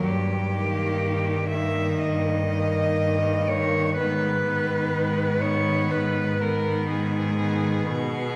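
A bowed cello melody, clear and up front with vibrato, opens over a focused cello accompaniment and a bright, up-front bass cello, with a smooth, even cello second line joining at 0.5 s in this solemn, melancholic classical fragment for cello ensemble in G# minor, taken at a rubato 61 BPM, its harmony moving from D#/G to G#m at 4.0 s within the resonant reverb of a recital hall.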